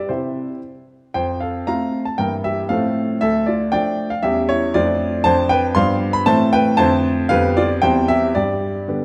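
A close, intimate grand piano with audible action noise plays alone through this playful, elegant classical-period sonatina fragment in a straight 2/4, spanning D2 to C6 as its brief opening gives way at 1.1 seconds to a longer passage that winds through diminished and dominant-seventh harmonies before settling on G, all bathed in a wet recital hall reverb.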